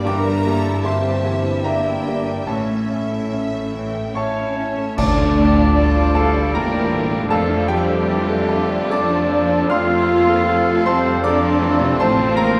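This excerpt from a lyrical, lush romantic movement for piano and orchestra opens in D minor with a brilliant baby grand piano carrying the melody up front, its long sustain ringing over a bed of bowed strings. A smooth studio violin section plays a second line, a very quiet viola section and a distant cello section fill in the accompaniment and bass, and a focused double bass section anchors the low end. Meanwhile, a chamber violin section also carries the melody in the background with expressive vibrato, and warm French horns hold soft sustained chords. The tempo moves freely in 3/4 at 71-81 BPM with rubato. At 4.1 seconds the woodwinds begin adding second lines, with a clear oboe and a pure, hollow flute, followed at 4.2 seconds by a dark, roomy clarinet. At 5.0 seconds the harmony arrives on D minor with a band accent, as vintage-toned trombones join on sustained chords, mellow trumpets play stabs and a very quiet tuba with light vibrato deepens the bass, while clash cymbals and concert bass drum add a brief, bright crash, all heard from further back in a reverberant scoring stage.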